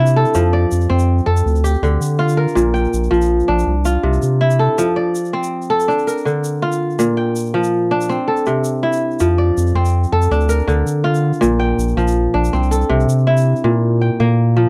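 Flowing and warm, this West African string and xylophone piece moves at 108 beats per minute in a straight 12/8 in F major, a short passage cut from a longer piece. An up-front acoustic kora carries it throughout with ringing, crisp, fingerpicked arpeggios spanning a broad range. Beneath it, a deep, thick, saturated sub bass with a sine-like tone and sustained notes plays a prominent part, dropping out at 4.7 seconds and returning at 9.2. A grainy, bright tube shaker sits close and low in the mix. The harmony cycles repeatedly through F, Dm, Bb and C before settling on a Bb5 chord at 13.6 seconds. The sound is dry and close, in the manner of a 1970s studio recording.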